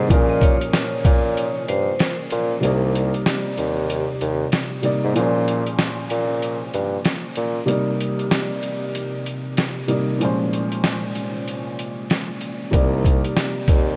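Boom-bap hip-hop with a dark, tough mood and a swung feel, this excerpt opens with a brief metallic, ringing vibraphone phrase in the background, heard only until 2.2 seconds, over a worn, woody upright piano whose slightly detuned chords carry audible action noise and a cassette tape character. A bassoon with light vibrato and a smooth top holds the low end up front until 7.6 seconds and returns at 12.7 seconds, while a gritty, pitched-down sampler-style drum kit with a thumpy kick and medium-tuned snare runs throughout. The whole mix is dreamy and soaked in a huge ambient reverb, with vinyl crackle beneath it.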